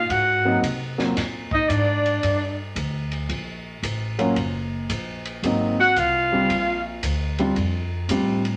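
A playful swing-and-bop clip at 113 BPM opens with a breathy, subtoned tenor saxophone carrying the melody beneath a clear trumpet line with scooped notes, both dropping out at 2.6 s and returning at 5.8 s, while a woody pizzicato upright bass, a compact cocktail kit with a high-tuned snare and dark cymbals, and an up-front grand piano comping through Ab9, Gmadd9 and Bb69 keep the swing going in a reverberant studio room.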